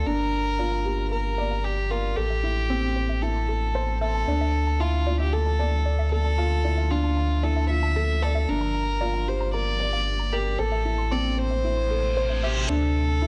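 Moving and cinematic, this electronica excerpt at 114 BPM in D minor sets a floating, sul tasto violin melody up front over a felt-muted upright piano riff with a mellow, short-sustain touch and a round, deep sub bass, while a cloudy granular pad holds blurred chords very quietly. A warbling, lo-fi pluck with chorus and tape echo runs arpeggios through a filter sweep behind them, cycling over Gm7, Am and Dmadd9 in a lightly reverberant space. An electronic reverse cymbal enters at 11.9 seconds and ends at 12.7 seconds, just as the chords return to Dmadd9.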